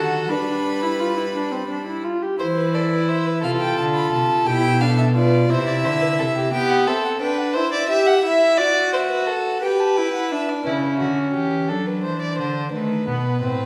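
In a straight 6/8 pulse at 58 dotted-quarter beats per minute, this lively, elegant baroque-style fugue for string quartet in C major unfolds with a period-style sound. A nasal, airy-bowed violin carries the melody over a second violin's gut-string line and an up-front viola with light vibrato. A rich, reedy cello anchors the bass until 6.5 seconds and returns at 10.7 seconds, just as the melody violin falls silent, all within the resonant bloom of a recital hall.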